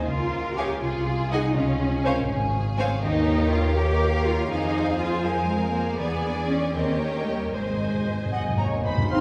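Heard from further back in a wet concert hall, this dramatic, restless classical passage in a rubato 6/8 places a bright violin section melody in the background over ringing harp arpeggios, a lush viola accompaniment, a rich second violin line, and expressive cellos and smooth double basses up front. Hard-mallet timpani enter with an articulate fill at 7.5 seconds, and an airy silver flute joins at 8.3 seconds. At 9.1 seconds a mellow clarinet, a cor anglais, a soft-attack bassoon and very quiet French horns sound briefly just before the cut.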